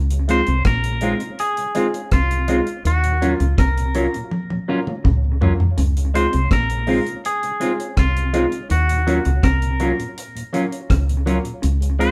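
Lovers rock reggae with a sweet, romantic mood, moving at 82 BPM in a straight 4/4 and cut from a longer piece, circling between Dbmaj7 and Ebm9 chords. The deep reggae drum kit sits up front with a dry, dark sound and a tight kick, using hi-hat, rim click and toms, and a drum fill runs from 4.3 to 5.8 seconds. Beside it, the deep dub fingered electric bass is round and foam-muted, starting at 0.0 seconds. A twangy, fingered electric guitar carries the melody up front, while a clean, picked electric guitar plays stabs and a baby grand piano adds present accompaniment. Further back, an electric guitar through a small old amp plays a slightly broken-up, lo-fi riff with harmonic tremolo and tape echo until 11.8 seconds, and a mellow tonewheel organ with key click, slow rotary speaker and tape echo fills in the background. The whole band plays live in one room with moderate studio reverb.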